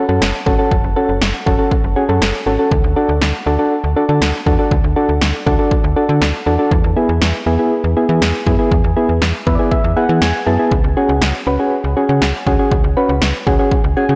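Soft, round electric-piano-like synth keys provide the accompaniment in this driving, melancholic synth-pop fragment, their gentle, vintage tone warbling through chorus as they carry the chords from F#madd9 through D and E to C#sus4, adding brief fills at 9.2 and 13.7 seconds. Beneath them, a snappy FM bass with a metallic attack and tube saturation sits up front beside a punchy analog drum machine whose kick and snare sound re-recorded in a small room. The whole recording is blown-out and overdriven, bathed in a lush hall reverb.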